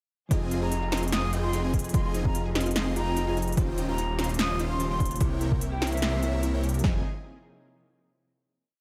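This lightly reverberant, emotional, bittersweet future bass piece in F minor moves at 147 BPM with a half-time feel, launching straight into a drop at 0.3 seconds over Fm7, Eb13 and C7b9 before landing on a final Fm7 chord at 6.8 seconds. A punchy, overdriven big-room dance drum kit with crisp hat rolls drives a thick, chorused detuned saw bass and a huge, compressed supersaw riff of throbbing dotted-rhythm chords, both pumping with sidechain alongside a bell-like electric piano's held, syncopated chords. Beneath them sit a very quiet unison pluck looping a six-step arpeggio that drifts against the bar and a distant, sustained string section, while an airy concert flute with vibrato and tape echo carries short, expressive phrases on top.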